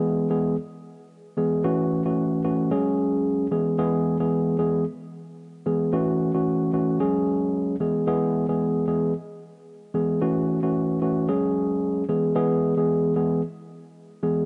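This afrobeats fragment, cut from a longer piece, has a mellow, sultry mood at a relaxed 112 BPM in 4/4, with a light swing on the sixteenth notes. A lone tine electric piano carries the whole 14.5 seconds, sitting up front with a clean, warm tone heard through its built-in speakers, and its cassette tape treatment adds a worn character. Its playing stays in a middle register between E3 and G#4. The harmony cycles through a short loop, moving from E to F#m7 to C#sus4 and settling back on E, a pattern that repeats three times. A light reverb surrounds the instrument, and the home cassette recording rolls off the top end, giving the sound a soft, intimate, lo-fi haze.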